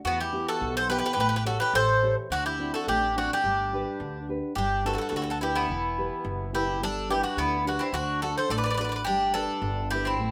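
A straight 2/4 pulse at 106 BPM carries this hopeful Greek folk excerpt in G major, with a bright, metallic bouzouki playing the up-front picked melody on its doubled strings while a second bouzouki adds a lower line from 0.1 s. Underneath, a dark, thumb-plucked nylon-string guitar supplies the accompaniment and a woody, growly upright bass holds down the low end in pizzicato. Heard in a moderate studio room, the band moves through chords such as Em, A7, D7 and G before shifting into a new section at 4.6 s.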